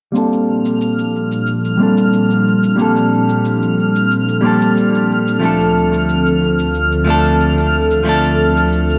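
A dark, picked clean electric guitar sits up front in this excerpt of sunset chillout, shaped by a low-pass filter sweep and dub echo over chords moving from Bbmaj13 to Dm7 at 5.4 seconds. Alongside it, an airy, breathy pad with a detuned, chorused body holds sustained chords, while a gritty, overdriven shaker carries a lightly swung feel at 91 BPM in 4/4, and a twinkling granular texture with octave-up shimmer enters at 0.8 seconds. The smooth, blissful mix is steeped in spring reverb and digital ambience.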